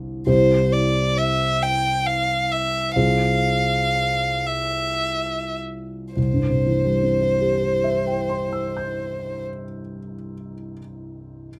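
Captured with close, detailed microphones and light reverb, this serene, tender romantic classical duo in rubato triple time pairs a dark, mellow vintage grand piano, its action noise audible as it accompanies until 11.5 seconds, with a clear, bowed violin carrying the melody with vibrato from 0.3 until 9.4 seconds, the pace slowing through the opening section as an F minor over C chord shades the harmony before it settles back on C.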